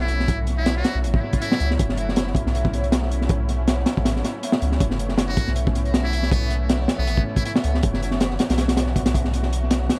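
Dark and nostalgic, this drum and bass cut leans into jungle, carried by a swung, crunchy breakbeat kit that sits up front with a punchy kick, a high-tuned snare, hi-hat and a saturated, gritty character softened by a rolled-off top and dub echo. Beneath it, a soft dub sub bass holds down the low end with a deep, round, mellow tone, sustaining throughout. A lush unison pad of detuned sawtooth voices spreads thick, nasal chords across the whole passage, brightened by chorus and a long release, resting on a single minor seventh harmony. A trumpet with a metal mute carries the melody in short phrases, first from the opening to 1.7 seconds and again from 5.3 to 7.5 seconds, its buzzy, thin sound marked by scooped notes, vintage 12-bit sampler grit and dub echo. Light reverb, vinyl crackle and an echo-heavy mix give this fragment of a longer piece a hazy, aged atmosphere.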